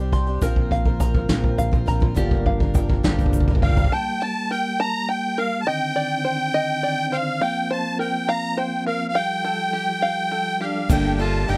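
A wistful, yearning indie folk excerpt in G minor and 6/8 at 69 BPM opens with a build-up: plunky, fingerpicked open-back banjo arpeggios, boxy octave-doubled twelve-string guitar, woody upright piano and round electric bass sit under a roomy brushed drum fill, with a grainy egg shaker in the background. A reedy, shimmering musette accordion melody enters at 3.6 seconds, and at 3.9 seconds the piano, guitar, bass, shaker and drums drop away, leaving the banjo beneath the accordion and soft, flute-like tonewheel organ chords turning through a slow rotary speaker with chorus vibrato. A nasal, gut-string fiddle joins at 10.6 seconds just before the fuller band returns at 10.9 seconds, all in a dry, close sound.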